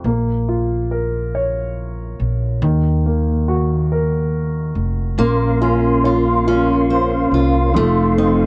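In six-eight time, this dramatic, melancholic pop ballad excerpt opens with a warm, natural baby grand piano and a woody pizzicato upright bass up front, joined at 5.2 s by a full-bodied picked steel-string acoustic guitar playing arpeggios with audible finger squeak and a soft, flute-like tonewheel organ holding sustained chords through chorus vibrato and a slow rotary speaker, while the piano, guitar and organ carry a cassette-tape tint in a lightly reverberant studio ambience.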